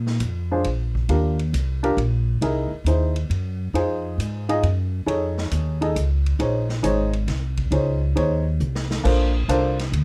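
Small-group swing and bop jazz in a smoky 3/4 at 136 BPM, set in Bb minor with a swinging 8th-note feel and a dark production under light reverb, cut from a longer piece. An up-front, woody pizzicato upright bass anchors the low end from the start, while an intimate baby grand piano with short sustain and audible action noise comps from 0.5 seconds over chords like Ebmaj9, C7alt and Bbm11. A distant, roomy drum kit with dark cymbals, a boomy kick and a rolled-off top sits further back, and it plays a fill from 8.6 to 9.0 seconds before the harmony lands on Bbmaj9.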